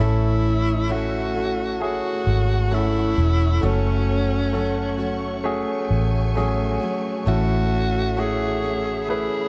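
A raspy, gritty alto saxophone carries the melody up front in a tender, heartfelt pop ballad, its scooped notes and vibrato trailing dub echo, while a round, foam-muted electric bass sits punchy and dark beneath it, dropping out at 9.3 seconds. A clear concert grand piano with deep bass and short sustain plays the accompaniment and a picked steel-string acoustic guitar arpeggiates in the background, both also echoing, as a lush, distant string section holds bowed chords with portamento. The short cut moves from A to F#m at 3.6 seconds and back, all bathed in a moderate plate reverb within an echo-heavy mix.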